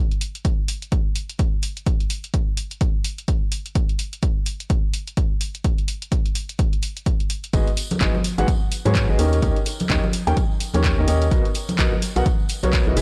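A dry, gritty hardware recording with lossy compression artefacts carries this energetic, soulful piano house cut at 127 BPM with a 16th-note swing, where a punchy analog drum machine's handclaps and hi-hat and an up-front electronic kick open the excerpt before a clear, woody upright piano riff with sidechain pumping and analog delay, a hollow, dark, organ-like FM bass, also pumping, and ringing tambourine and congas played with soft hands all enter at 7.5 seconds over G#m7, D#7 and Bmaj7.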